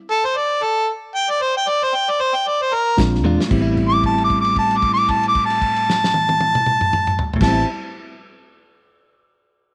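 A straight-eighth soul-blues groove with a light sixteenth-note swing carries this mournful, brooding fragment, as an overdriven, up-front harmonica with light vibrato, scooped notes and tongue slaps plays alone from 0.1 seconds until the band arrives at 3.0 seconds with a small-room kit (fat snare, tight kick, dark cymbals) that plays a fill at 3.2 seconds, a round, foam-muted electric bass, a reedy electric piano with fast tremolo and, from 3.2 seconds, bright, compressed clean guitar stabs, and from 3.5 seconds one long note is held under light reverb.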